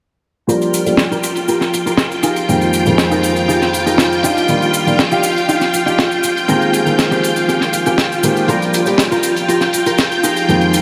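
A lush, sawtooth-rich string machine ensemble with sub-octave body and ensemble chorus sits up front, holding slow-swelling sustained chords over Gm7, Fm11, Ebmaj9 and Abmaj9 in this groovy, sunny nu-disco excerpt at 120 BPM, joined by a dark baby grand piano with vintage 12-bit sampler grit and a filter sweep, a mellow, clean, compressed electric guitar riff with analog chorus and its own filter sweep in the background, a tight, polished funk kit of hi-hat and high-tuned snare, and a distant cabasa, all bathed in a dreamy, huge ambient reverb.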